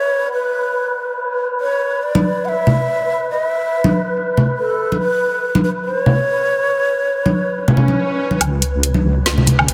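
A breathy low ney carries a meditative C# phrygian melody with vibrato and dub echo over an airy, dark wind-like noise texture, joined at 2.1 seconds by bright, saturated congas played with soft hands. This heavy deep dubstep excerpt moves at 141 BPM in a swung half-time feel, and a swell and riser lead into a build-up at 8.4 seconds. There a detuned, sawtooth wobble bass with chorus arrives alongside a brief knocking electronic kick and an up-front garage kit of woody snare, metallic hats and woodblock, all under light reverb.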